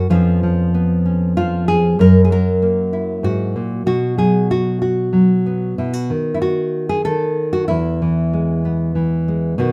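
A solo nylon-string guitar opens this short folk excerpt, fingerpicked and set up front with a full-bodied, deep classical tone. The mood is peaceful and gentle, moving at 95 BPM in an unhurried 3/4 with a straight feel, in E major and tuned slightly low, with A4 at 439 Hz. The guitar spans from E2 up to A#4, passing through C#7/E#, F#7 and B before settling on E at 7.7 seconds. Light reverb gives the lone instrument a soft sense of space across its roughly 9.7 seconds. Cut from a longer piece, it feels like a single tender phrase of a larger fingerstyle work.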